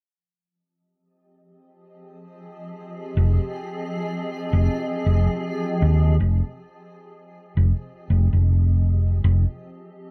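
At 79 BPM in 4/4 with a swung sixteenth-note feel, this meditative, spacious ambient dub fragment in F minor rests on an Fm7 chord, cut from a longer piece. A bright, blurred granular cloud pad with its own reverb fades in to hold sustained chords from 2.6 seconds, soon joined at 3.2 seconds by a round, dark hollow-body electric bass sitting up front. The mix is otherwise dry, carrying audible lossy compression artefacts.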